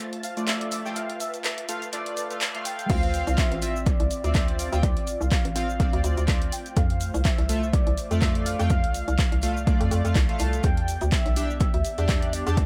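An overdriven, layered electronic kick punches up front once the drop lands at 2.9 seconds, joined by a hollow, bouncy FM bass with a knocking, fast attack and a decaying tail. This is deep, hypnotic deep house at 124 BPM in 4/4 with a light 16th-note swing, moving from Fmaj7 through Dm9, back to Fmaj7 and on to Em7. Before the drop, a short build-up features a filter sweep on a glossy, retro polysynth whose chorused pulse-wave and sawtooth stabs pump with sidechain compression and trail analog delay throughout. A velvety, detuned synth lead carries the melody with chorus, vibrato and dub echo, while an airy, breathy pad sustains soft chords in the background, pumping under its own chorus. The rhythm comes from a punchy analog drum machine playing cabasa, crash, handclaps and hi-hat with analog delay, layered with a very quiet small-room soul kit of hi-hat, shaker and snare. A distant, lush violin section adds a faint, expressive bowed texture only during the opening build-up, and the whole mix feels echo-heavy with light reverb and a trimmed low end.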